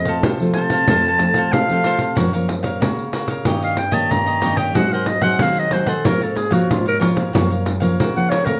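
A jingly, up-front pandeiro drives a straight 4/4 samba-and-choro groove at 93 BPM, while a full-bodied, fingerpicked nylon-string guitar with audible finger squeak and a bright, crisp, picked cavaquinho fill in the accompaniment. Over them a raspy, growling, vintage-toned clarinet with light vibrato and scooped notes takes a jazz-style solo across the whole 8.6-second excerpt, lively yet yearning over chords moving from F through Gbmaj7, Ab7 and Db6/Ab. Close, detailed microphones and light reverb keep the sound intimate.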